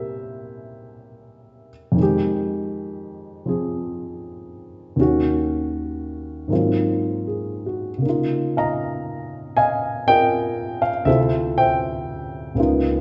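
A dark, mellow baby grand piano plays alone and up front through this 13-second stretch of smoky, cool solo jazz, its intimate, short-sustained tone and audible action noise set in a wet recital-hall reverb with a dulled top end, as a loose rubato swing feel around 79 BPM in 4/4 carries it from C7 and Fm9 through Ab13 to Db69 before it moves to Dm9 at 11.1 seconds, all tuned to A4 = 439 Hz.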